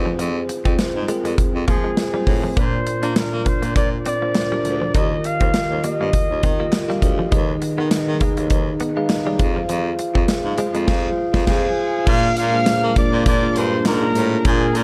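Nostalgic and romantic, this 1980s-style pop excerpt pairs a bell-like tine electric piano with analog chorus and a breathy baritone saxophone carrying the bass over a big, punchy rock drum kit, while a twangy, chorused clean electric guitar riff sits in the background, faint crisp handclaps enter at 3.2 s, a clear flugelhorn sings the melody, and a band accent at 10.9 s is joined by a very quiet, lush violin section at 11.5 s and a smooth, detuned analog pad at 12.1 s, inside a dark production bathed in hall reverb.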